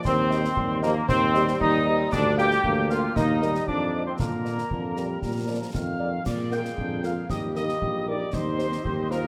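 A spirited, rousing military-style wind band march in Bb major at 116 BPM in 2/4, cut from a longer piece, opens with concert snare, bass drum and dark-toned clash cymbals, close and dry, beneath a mellow, vintage trumpet section carrying the melody in the background, while a clear, roomy euphonium, a tight woodwind section and a pure wooden piccolo with expressive vibrato add second lines, the trombone section sustains chords with a warm, present tuba up front on the bass, soft-attack French horns enter at 0.3 seconds, and the concert hall reverb lends everything a moderate bloom over chords moving from Cm/Eb through Eb and F7 to Bb.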